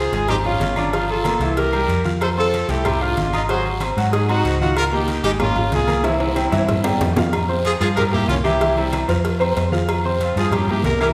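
A clear horn section carries the melody at 188 BPM over a brilliant concert grand piano and a punchy, up-front hollow-body electric bass, with congas, cowbell and bongos, guiro, ringing agogo bells and timbales, and very quiet woody claves filling out a driving, danceable salsa groove in a reverberant hall. A fill at 6.0 s leads into a shift to F harmonic minor at 7.3 s. At 9.1 s a mellow, felt-muted upright piano with audible action noise briefly adds a second line before this cut from a longer piece ends.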